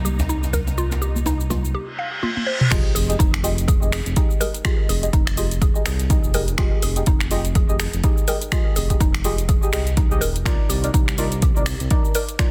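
This afro house excerpt opens at 124 BPM in F dorian with a brief bed of soft, bowed studio strings under a filter sweep, while woody, round mallet-like synth plucks arpeggiate through chorus and tape echo above a smooth, mellow synth bass, and bright congas and hard-handed, rattling djembe flicker through the first 1.6 seconds alongside an afro-pop kit of finger snaps, shaker, toms and metallic hats. A reverse cymbal and sub drop enter at 1.9 seconds and a drum fill leads into the drop at 2.7 seconds, where an overdriven, punchy electronic kick takes the front and dark, deep chord stabs colored by phaser and chorus arrive, the harmony moving from Cm7 to Fm7. The mood stays warm and driving, with sidechain pumping on the strings, pluck, bass and stabs, a swung sixteenth feel, and a dense, heavily limited mix with little reverb.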